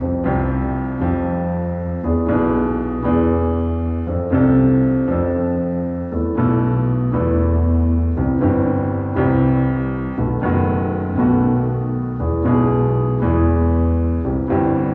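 Set in the wet reverb of a recital hall, this tense, passionate tango fragment moves at 118 BPM in 4/4 with a rubato feel. A natural, up-front baby grand piano carries the accompaniment through the full 14.9 seconds, reaching from deep in the bass register up to the middle range. A single bowed double bass plays a smooth, even line with vibrato alongside it, over harmonies that shift from Fsus2 and E7 through F6, Esus4, C and B7 to E before closing on C.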